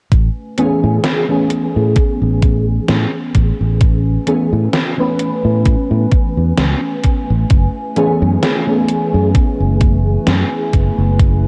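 Vaporwave at a slow 65 BPM in A major, this dreamy, woozy fragment of a longer piece sits in 4/4 with a light 16th-note swing and is tuned slightly sharp to A4 = 442 Hz. A warbling, detuned pad with a sub octave holds soft-edged sustained chords from the very start, its nostalgic lo-fi haze thickened by chorus and built-in reverb, while a round, punchy fingered electric bass sits up front beneath it. An overdriven, thumpy electronic kick anchors the beat, joined by a sampler-style 80s drum machine whose hi-hat and gated-reverb snare carry their own overdriven grit and small-room character. At 0.6 s a mellow FM electric piano enters with a soft, decaying tone and a noise layer, treated with ensemble chorus and analog delay. The harmony rests on Amaj9 before shifting to F#m11 at 7.5 s, all wrapped in light reverb and a cassette-tape sheen.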